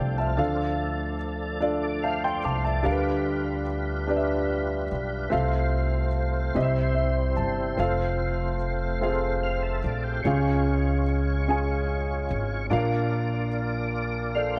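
Slow gospel in a straight 6/8, reverent and soulful, built on an intimate concert grand piano with deep bass and audible action noise, a full, lightly overdriven tonewheel organ holding sustained chords through a slow rotary speaker and chorus vibrato, and a woody pizzicato upright bass sitting up front. The piano steps out with brief fills at 1.6 and 6.6 seconds over a chord movement that drifts from D minor through F to a darker D-flat before settling on B-flat. A lush hall reverb wraps the ensemble in a warm, churchlike glow across this short excerpt from a longer piece.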